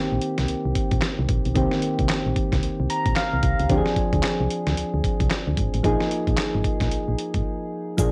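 Punchy and slick, this short cut of new jack swing R&B swings on its sixteenths as chorused, mellow electric-piano-like synth keys with a cassette-tape tint carry the chords from Cm7 through Dm7b5 to Bb7sus4, with a keys fill at 2.6 seconds. A round, dark FM bass joins a gritty, compressed sampler-style drum kit that sits up front with a thumpy kick, medium-tuned snare, handclaps and hi-hat, all in a home-cassette sound with moderate studio ambience. A break arrives at 7.5 seconds, and a grainy, bright tube shaker enters at 8.0 seconds.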